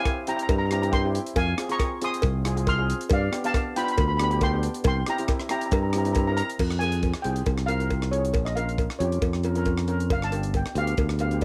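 A shimmering, airy lead steel pan carries the melody up front in this driving, tense calypso fragment at 137 BPM with a light sixteenth-note swing, over mellow, soft cello pans, a dry, polished funk kit of crash, hi-hat, tight kick and rim click, a close metallic cowbell, and a bright, direct fingered electric bass that enters at 0.5 s, the harmony settling into F minor at 6.6 s while cassette-tape grain on the pans and drums and a light reverb give the home recording its character.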